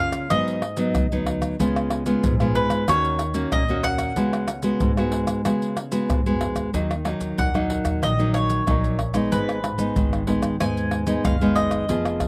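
A bowl-back mandolin with doubled strings and a slapback echo takes the lead from 0.0 s over bright, up-front fingerpicked nylon-string guitar with audible finger squeak, joined by close, tight-surdo maracas, pandeiro, tamborim and surdo and, from 0.3 s, a dark, woody, thumpy pizzicato upright bass, in this lively, bittersweet samba and choro at 93 BPM that settles into Eb minor at 6.7 s, captured dry in the open air.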